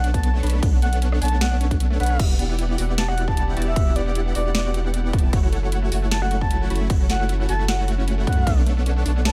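A saturated, deep sub bass sits up front in this lush, dreamy future bass excerpt, pumping under the sidechain at 153 BPM in 4/4 with a half-time feel, tuned slightly below standard pitch. A breathy, flute-like synth lead carries the melody with soft attack and vibrato, dressed in chorus and dub echo, while a huge, detuned supersaw plays a compressed riff. In the background, a warbling, vintage-toned unison pluck runs arpeggios through cassette-tape coloring and dub echo. A punchy, layered electronic kick drives the drop alongside a trap kit with a sharp snare and bright hats, and the kick drops out briefly from 1.8 to 2.2 seconds. At 2.2 seconds an earthy chamber string section enters with bowed, sustained chords as the harmony moves from Bm9 through Em9 and F#m7 and back to Bm9. The mix is dry, with little reverb.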